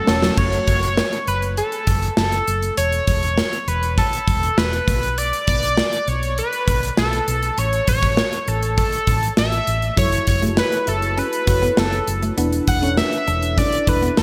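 A gated drum fill with a punchy kick opens this dramatic, nostalgic 1980s-style pop piece, as a bold, detuned sawtooth lead doubled at the octave sits up front through chorus, delay and shimmer reverb, backed by a dark, round hollow-body fingered bass and a brief, very quiet overdriven guitar, before the dreamy FM electric piano with its soft pad layer and a twangy clean guitar riff in analog chorus return at 10.0 s, the whole mix set in a lush hall reverb with bright digital production.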